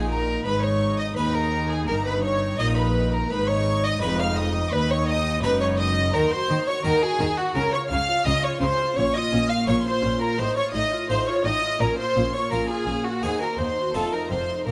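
Heard close and in fine detail in a moderately reverberant recital hall, this stormy, dramatic baroque-style concerto movement with solo episodes is cut from a longer piece, and every part plays throughout its 14.7 seconds. A dark-toned solo violin carries the melody with smooth, even vibrato, doubled higher by a chamber violin section played sul tasto with light vibrato and a soft attack, while a warm studio violin section adds an expressive second line in the background. A brilliant French-style harpsichord and a focused viola section fill in the accompaniment, and a rich cello section in the background joins a dark, expressive, softly attacked double bass section on the bass.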